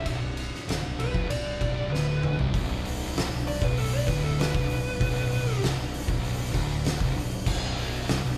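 An oversized, low-tuned acoustic drum kit sits up front with a punchy kick, a fat snare and dark cymbals, ringing in a bright stone room that pumps around the hits, and a drum fill at 1.9 seconds leads into the second section. This brooding, ominous stoner and doom metal excerpt moves at a heavy 97 BPM in 4/4 with a straight feel, anchored in B minor on a B minor chord. A dark, picked fuzz lead guitar carries the melody from the opening and turns to a solo at 2.5 seconds. Two thick, distorted fuzz guitars grind out the low riff in the background, alongside a growly fingered electric bass with overdriven fuzz. Underneath, a smooth, clean tonewheel organ holds very quiet sustained chords through a slow rotary speaker. The band sounds as if playing live together in one small room with moderate reverb.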